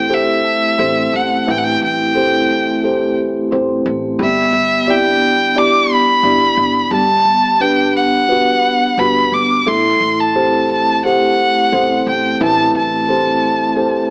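A clear, focused bowed violin with vibrato sings the melody up front through plate reverb in this heartbroken, intimate acoustic folk-pop ballad, over a soft, dark felt-muted upright piano with audible action noise, ringing metallic vibraphone arpeggios and a woody pizzicato upright bass in the background, the whole cut carrying an AM radio sound and light reverb as it moves from Am7 through Em7/G and Gmaj7 back to Am7.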